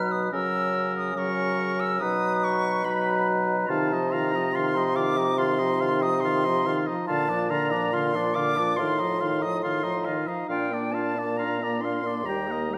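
Lyrical and serene, this slow romantic classical movement for wind quintet unfolds at 71 BPM in 4/4 with a rubato feel, settling into Bb major from 3.7 s, as an airy, up-front silver concert flute with vibrato and a soft attack carries the melody over a clear oboe second line, a vintage-toned clarinet and a smooth-topped French horn in accompaniment, and a mellow, close-miked bassoon bass, set in a wet recital hall reverb across this 12.8-second excerpt.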